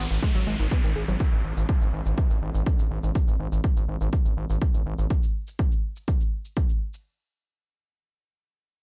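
A gritty, nasal synth bass, saturated and pumping up front, drives this dark, hypnotic melodic techno fragment, joined by a heavy, tape-warm electronic kick drum from 0.2 seconds, a bright analog pluck arpeggio with chorus and tape echo that moves through a filter sweep before stopping at 1.1 seconds, a brief electronic downlifter, and an overdriven shaker set in a large room, inside a digital ambience.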